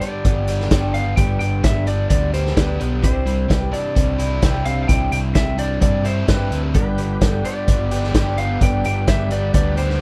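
Set in an intimate small-room ambience, this hopeful, open-road folk-rock and heartland-rock excerpt carries a dark, slightly broken-up slide guitar melody over a bright, double-tracked overdriven guitar riff, a punchy, up-front vintage drum kit, an amped electric bass that enters at 0.2 seconds, a boxy picked swing-style acoustic guitar in the background and a very quiet, mellow baby grand piano, while a lightly overdriven tonewheel organ on slow rotary speaker adds sustained chords from 6.7 seconds as the harmony moves from G to Cadd9 and back to G.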